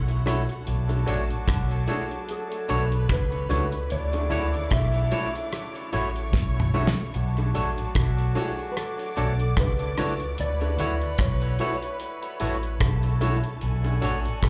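The sound is that of a live gig heard through the venue's PA, with club reverb and a light, small-room ambience around a smooth, longing slice of lovers rock reggae in B dorian, moving at 74 BPM in 4/4 with a swung sixteenth feel. Up front, a damped 70s drum kit with a fat snare and tight kick sits beside a dark, foam-muted fingered electric bass, round and punchy, with the drums taking a fill from 6.3 to 7.1 seconds. A twangy, clean electric guitar plays picked stabs, while a barky, gritty electric piano, overdriven through a combo amp and touched with subtle chorus, keeps to the background as accompaniment. A mellow electric guitar, compressed and fingered, carries the melody from 1.9 seconds, and a distant, bowed string section with vibrato and a roomy, tight horn section supply second lines, the strings trailing dub echo. High-tuned bongos struck with hard hands add percussion from the back as the harmony rocks between Dmaj9 and Bm9 across this brief cut from a longer piece.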